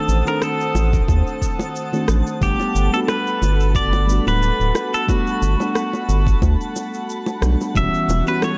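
A bright, twangy pedal steel guitar with slide and volume swells leads this wistful, warm sunset chillout excerpt at 90 BPM with a gently swung sixteenth feel, its clean tone roughened by vintage 12-bit sampler grit and tape echo, over a mellow, dark FM electric piano with chorus and digital delay, an airy, breathy pad with chorus, a faint twinkling granular shimmer bathed in its own reverb, a round analog bass up front, an overdriven electronic shaker and rim click, soft low-tuned bongos in the background, and a deep layered electronic kick that enters at 0.9 s, with the harmony moving from D7b9 to Gmaj9.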